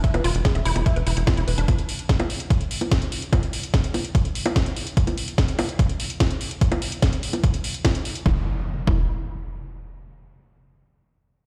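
A woody, wave-folded pluck riff with chorus, sidechain pumping and dub echo sits over a punchy, up-front electronic kick, a techno kit of bongos, metallic hats and cracking snare, and a tight, mellow sawtooth sequencer bass with tube saturation. The bass drops out with the pluck from 1.6 to 8.3 seconds while the drums drive on in this psychedelic, driving 146 BPM trance excerpt. The pluck and bass return at 8.3 seconds alongside an electronic impact, all bathed in large studio reverb.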